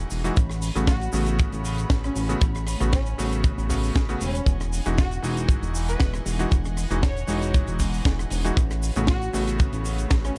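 Set in 4/4 with a gently swung sixteenth feel, this sunny, feel-good nu-disco excerpt rides on an up-front, tight acoustic kick from 0.4 seconds, joined by a small-room funk kit of hi-hat, rim click, shaker and high-tuned snare, plus a very quiet tube shaker blended with group handclaps. Beneath it, a glossy, retro synth bass built from pulse, sawtooth and triangle waves, with ring modulation, wave-folding, a filter pluck and chorus, sits mellow and forward, pumping with sidechain. A clear electric grand piano with clangy lows and chorused unisons plays the accompaniment, and a biting, earthy studio string section holds sustained chords in the background, both pumping in the same way. From 0.9 seconds a dark, woody chamber violin section carries the melody with vibrato and an analog delay. The harmony moves from A69 to Emaj9 and back at 8.6 seconds, all in a dry, dark and warm production.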